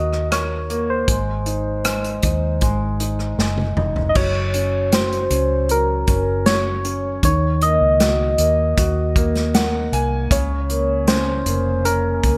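This bright, 1980s-style digital recording sits in a moderate plate reverb that gives a long tail to an emotional, heartfelt pop ballad, cut from a longer piece. A soft FM synth lead carries the melody with a round, keys-like tone, its fast attack decaying under chorus, phaser and vibrato. A clear baby grand piano with open, long sustain and a subtle chorus plays the accompaniment, while a vintage fingered electric bass, foam-muted and amped, supplies a dark low end. The acoustic drum kit, played with bundle sticks in a roomy studio space, brings dark cymbals, a medium-tuned snare, a tight kick, rim clicks, hi-hat, crash and toms, with gated reverb on the kit. A drum fill at 3.4 seconds leads into the second section, and the piano adds its own fill at 9.2 seconds as the harmony moves from Ebm through Ab, Gb and Ebm7 to Bbm.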